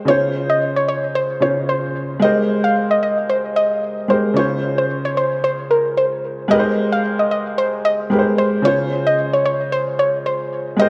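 A lightly swung sixteenth-note feel in 4/4 drives this breezy, joyful afrobeats excerpt, where an intimate, boxy grand piano sits up front with its action noise audible, accompanying with lush major-seventh and ninth chords. From 0.1 seconds a soft, round, mellow pluck carries the melody in a high register, shimmering with chorus and tape echo. A long plate reverb soaks the whole mix in a dreamy haze, and the music moves into a second section at 6.5 seconds, continuing to the cut at 10.9 seconds.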